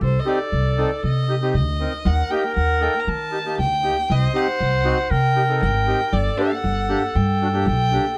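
Klezmer at 118 BPM in 4/4, bittersweet and soulful, cut from a longer piece in C dorian sharp4, where a clear, biting bowed violin with vibrato carries the melody up front through plate reverb, a bright classical-style clarinet plays a second line, a woody, thumpy pizzicato upright bass sits prominently beneath, and a reedy, hollow accordion enters at 0.3 s with accompaniment over Cm, Eb and Gm chords, all in a small room with a dark, warm production.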